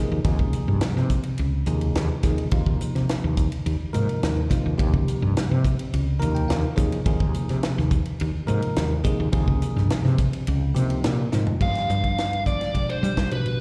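Electric jazz fusion with a bright, funky mood, this short excerpt from a longer piece moves in a straight 4/4 and sounds like a live gig heard through the venue's PA, with a light recital-hall reverb around it. A bell-like tine electric piano carries the accompaniment from the start, its clean, glassy tone colored by phaser and slapback echo, and it slips in a fill between 5.9 and 7.1 seconds. A woody fretless electric bass sits up front with a dark, round, hollow-bodied voice, while a tight funk drum kit with a high-tuned snare, punchy kick, hi-hat, ride, crash and toms sounds natural and close, as if in a small room. The opening stays on a suspended Ebsus4 harmony until a drum fill at 11.3 seconds sets up a shift to a tense G7b9 chord. At 11.6 seconds a biting, overdriven lead guitar enters with the melody, its picked, brilliant tone steeped in plate reverb, slapback and tape echo.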